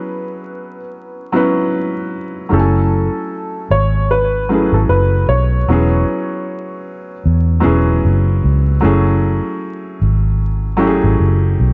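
Reflective and nostalgic, this short lo-fi hip hop fragment, cut from a longer piece, settles into a swung 4/4 groove. A felt-muted upright piano carries the accompaniment from the start, its soft, intimate tone and short sustain sitting close and up front, while a dark upright piano with a worn, woody, slightly detuned character plays a brief melody through a low-pass filter and analog delay until 7.6 seconds. At 2.5 seconds a vintage muted fingered electric bass enters, round and foam-muted, anchoring the low end prominently. The harmony drifts between E6/9 and F#m9 chords, giving the passage a gentle, unresolved sway. Light reverb and small room ambience frame an echo-heavy mix dusted with vinyl crackle and capped in the highs, lending the whole a hazy, lived-in quality.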